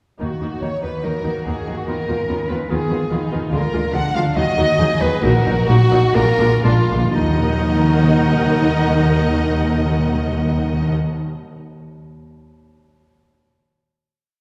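Classical, a dramatic and urgent fast romantic piece for symphony orchestra with a rubato feel, in which a lush violin section carries the tune with vibrato and portamento beside a clear clarinet second line, a dark violin section enters at 1.0 s with a woody counter-melody, violas and cellos hold sustained chords and bass notes over a focused double bass section, a bright harp rings very quietly in broken chords, and hard-mallet timpani strike single strokes before a fill from 6.2 s as the music slows into a final chord at 7.2 s, the orchestra heard from further back in a wet concert hall.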